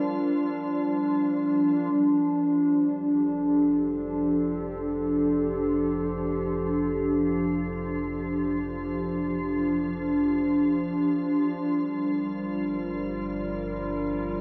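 A warbling, nostalgic pad opens this peaceful ambient fragment, its detuned, lo-fi tone sitting up front as it holds sustained chords, joined from the first moment by a calm, organ-like drone shimmering with ensemble chorus. At 1.9 seconds a round, deep analog bass arrives, its low notes colored by tube saturation. From there the drone gradually fades in while the bass slowly fades out over the remaining time. The harmony drifts from Gm7 to a long-held F69 before returning to Gm7 at 11.6 seconds, lending the passage a weightless, suspended quality. Everything floats in a dreamy mix soaked in a cathedral-like reverb with a 6.3-second decay, and the fragment is cut from a longer piece.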